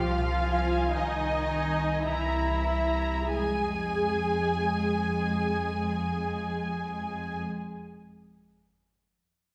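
Muted violins carry a yearning melody from 0.4 s, their veiled, close tone softened by vibrato and a gentle attack. This slow, solemn romantic movement for string orchestra sits in F minor and moves in a rubato 3/4 at about 44-58 BPM, slowing through its opening phrase. A second muted violin section spins a lush line beneath the tune. Con sordino violas sit up front with a smooth top, while the cellos add light vibrato and the double basses anchor the bottom with a dark, distant-sounding weight. The harmony moves from Fm/C to C7 and settles on F minor as a new phrase begins at 3.3 s, all set in the wet reverb of a recital hall or church. It is cut from a longer piece.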